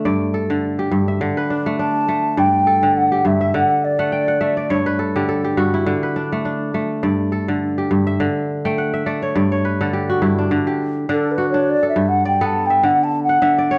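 A dark production in a moderate recital-hall reverb carries this joyful, hypnotic West African traditional excerpt in a swung 4/4. An up-front, crisp, ringing fingerpicked kora spins arpeggios throughout and adds occasional fills, while a distant, hollow, mellow wooden flute with vibrato sings a pure, tongued melody from 1.8 seconds and returns at 11.1 seconds for its solo, over chords that sway between G and D.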